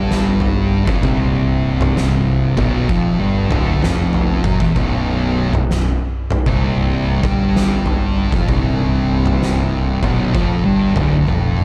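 Stoner and doom metal at a crawling 64 BPM in 4/4, with a swing feel on the eighth notes and an ominous, heavy mood rooted in B phrygian over a B minor chord. Two thick fuzz guitars carry the riff throughout, both picked, dark and distorted, with one sitting up front in the mix. Underneath, a fingered electric bass plays the low end down to B0, its tone bright and growly with overdrive, though it stays in the background. An oversized, low-tuned acoustic kit enters at 0.1 seconds with a boomy kick, fat snare and toms, its big pumping room sound saturated and gritty, and it closes with a drum fill from 11.3 to 11.6 seconds. The production is dark with light reverb, and the passage is cut from a longer piece.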